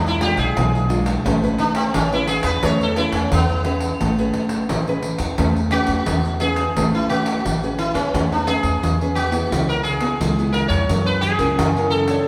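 Playful and sunny, this short samba and choro passage at 87 BPM in A major puts a buzzing, shimmering, plectrum-plucked sitar with sympathetic strings up front, soloing from 0.0 to 6.8 seconds, over a fingerpicked nylon-string guitar, a dark, woody pizzicato upright bass on gut strings and a jingly pandeiro, while the ensemble rings in a reverberant recital hall and the harmony moves from E7b9 to Amaj9 and later through C#m7 and F#7.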